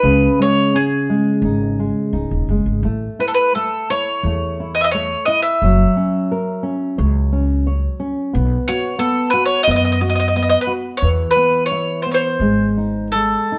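A bowl-back mandolin carries the melody up front in this mournful, longing fado-style ballad, its picked double strings ringing with a warm tone over a loose, rubato feel. Beneath it, a dark, fingerpicked classical nylon-string guitar supplies the accompaniment through chords such as C#sus2, A and F#5, while a woody, growly pizzicato upright bass adds a thumpy low end. The trio sounds as if playing live together in one studio room with moderate reverb, in a passage cut from a longer piece.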